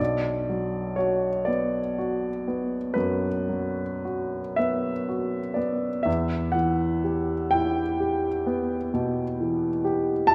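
A solo upright piano carries this brief fragment of a romantic classical nocturne, its tone clear, woody and polished, with long sustain and the noise of the action audible up close. The mood is mournful and melancholic, unfolding slowly in a 12/8 metre shaped by free rubato. The playing spans from B1 up to A5, giving the lone instrument both deep bass and a bright upper register. The harmony rests on B minor before moving to E minor at 6.1 seconds. The piano sits intimately at the front of a reverberant recital hall whose 1.4-second decay lingers around each note, and the passage ends at 10.3 seconds, cut from a longer piece.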